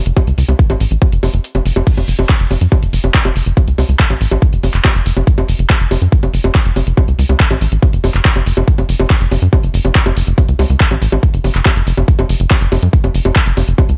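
A dry, up-front mix sets this intense, psychedelic trance cut from a longer piece at 141 BPM in F# minor, tuned slightly low to A4 = 435 Hz. A punchy, overdriven electronic kick leads the drums alongside a layered dance kit of bongos, crash cymbal, handclaps and metallic hi-hats, both touched with small room ambience, with a brief break at 1.4 to 1.9 seconds. Underneath, a tight, driving sequencer bass blends detuned sawtooth, square and triangle tones into a dark, fast-attack filter pluck with tube saturation, running from F#1 to F#2.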